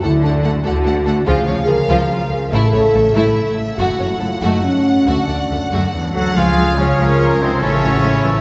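Bathed in a cavernous church reverb with a dark, rolled-off top, this soaring, heroic adventure-film excerpt moves at 95 BPM in a straight 6/8 through D, Db, A and Gbm chords: bowed violins carry a smooth melody over a lush second violin line, a background viola section slides with portamento, a mellow, tight French horn section holds sustained chords, a fingerpicked harp rings out arpeggios, and rich cellos and double basses anchor the bass, until a clear trumpet stabs in and an airy silver flute joins at 6.1 s, followed by a soft oboe and a very quiet clarinet at 6.4 s.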